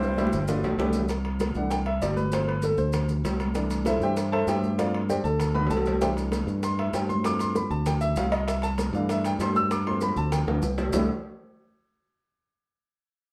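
An airy, reedy flute note and a vintage-toned baritone saxophone open this lively, danceable Afro-Cuban jazz excerpt alongside baby grand piano, fingered electric bass, tight high-tuned bongos and grainy maracas, both horns stopping within the first second as thin-skinned congas and ringing metal-shell timbales join in. From 1.1 seconds the up-front piano takes a natural-sounding solo over a bright, direct bass line and an alternation of C6 and G7sus4 chords, with a drum fill around 5.6 seconds. Distant congas and timbales sit behind the close, dry bongos, and a wet studio reverb places the band further back in the room.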